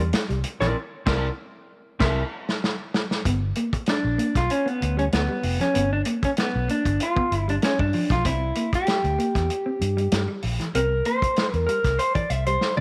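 A slightly broken-up, lo-fi electric guitar through a small old amp accompanies this gritty funk excerpt at 96 BPM, joined by a clean guitar solo from 3.3 seconds, over a round, foam-muted fingered bass, a soul drum kit with dark cymbals and a tight kick, and a mellow, clean guitar riff in the background, as band accents and a drum fill give way to a shift from C9 to G7 and then C7 in a small, lightly reverberant room.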